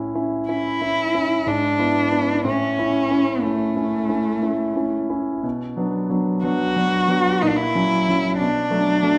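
Tender and lyrical, this romantic classical fragment for cello and grand piano moves in a slow 3/4 at 61 BPM with a rubato feel in A major. The piano sets out at 0.0 s with a clear, smooth accompaniment whose deep bass carries a vintage tone, and the bowed cello enters at 0.5 s with a rich, expressive melody full of vibrato, soft attacks and portamento. Both instruments sit up front in a recital hall's reverb as the harmony drifts from A through E7/G# toward Bm and F#7/A#, resting on Bm7 when the passage is cut off at 9.2 s.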